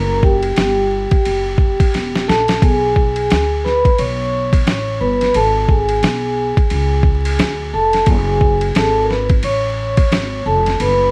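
Vinyl crackle and light reverb frame this cool, nocturnal jazz-hop groove at 88 BPM with a swung 16th feel in F# minor, where a mellow, ringing vibraphone with soft mallets and slow motor vibrato takes a vintage, band-limited solo up front, over a woody, dark pizzicato upright bass on gut strings and a gritty, compressed, pitched-down boom bap sampler kit with a thumpy kick and medium-tuned snare, which plays a fill at 1.9 seconds before the kick drops out at 10.8 seconds.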